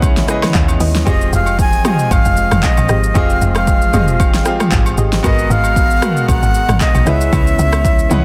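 Amapiano with a late-night, soulful mood, cut from a longer piece, where a punchy, overdriven deep house drum kit sits up front beside a woody, percussive log drum bass, while a clear concert grand piano, a detuned analog pad with sidechain pumping, and background agogo bells and woodblock fill out the groove; a deep, mellow chord stab with chorus and delay arrives at 0.8 seconds, a breathy, reedy concert flute with vibrato carries the melody from 1.1 seconds, and the piano closes on a fill at 7.8 seconds, all under a dense, heavily limited modern master.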